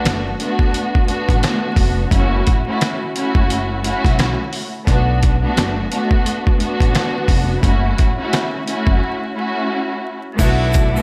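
A gritty, compressed sampler-style drum kit sits up front in this dark, reflective boom-bap hip-hop cut, its thumpy kick, medium-tuned snare, hi-hat and crash pitched down and re-recorded in a large room, with a swung sixteenth-note feel. Beneath it, a woody, growly pizzicato upright bass holds the low end, while a lush bowed string section, also up front, carries the chords with soft attacks, vibrato and portamento, given a tape-worn, filtered character. The harmony moves between Bm7 and F#m7, and a vinyl crackle hangs over the whole passage. After a break that begins at 9.0 seconds, a breathy, subtoned tenor saxophone enters at 10.4 seconds with a single mellow jazz note, joined by a very quiet tonewheel organ with slow rotary swirl and a grainy egg shaker far in the background. The piece is cut from a longer work and ends at 11.0 seconds, just as these new voices arrive.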